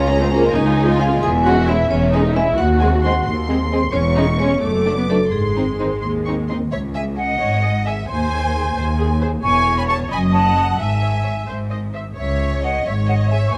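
A 6/8 pulse drives this sneaky, mischievous cut from a whimsical film cue, where ringing hard-mallet vibraphone and smooth violins share the melody over expressive second violins, lush violas, rich cellos and bowed double basses, while dark, distant horns hold chords in the background through the opening section; the vibraphone drops out at 6.4 seconds, and an airy concert flute takes up a second line at 6.7 seconds.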